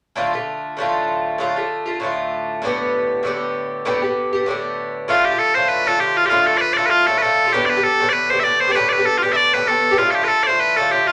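An Irish bouzouki opens this spirited, dark Celtic folk excerpt at 0.2 seconds, its picked double strings ringing metallic and up front as it moves between Dm and Gadd9 in D dorian at a brisk 196 BPM with a light swing. At 5.1 seconds loud, piercing bagpipes take the lead with a continuous solo melody, sitting bright and forward above the bouzouki. A small room adds a moderate touch of reverb to this lively section of a longer piece.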